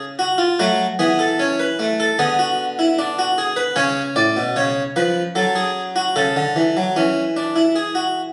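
A solo harpsichord opens on a C# chord, then unfolds a stately, elegant three-voice baroque-style fugue in F# minor at 75 BPM in a straight 4/4, ranging from A2 to G#5. The plucked, round tone of this French-style instrument's single set of strings sits up front, moving through F# minor, a G# diminished chord over D, back to C# and F# minor again before shifting to a C# minor colour over E at 7.0 seconds. Captured on a phone in a stone room with moderate reverb, this short excerpt is cut from a longer piece.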